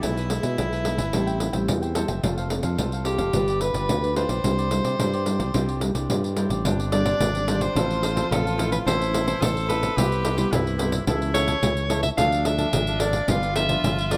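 An edgy soprano saxophone carries the melody up front in this playful, joyful samba and choro excerpt, singing in a jazz style with vibrato over a straight 4/4 feel. A punchy, growly fingered electric bass sits equally forward, alongside a jingly pandeiro played with hard hands that sounds compressed and saturated. Further back, a crisp, picked cavaquinho and a woody, full-bodied nylon-string guitar, fingerpicked on old strings with a deep classical tone, fill out the accompaniment. At 6.7 seconds a bright tenor saxophone joins with a second line, also shaded by vibrato, as the music moves into a new section. A moderate plate reverb lends some space to the rough home demo mix.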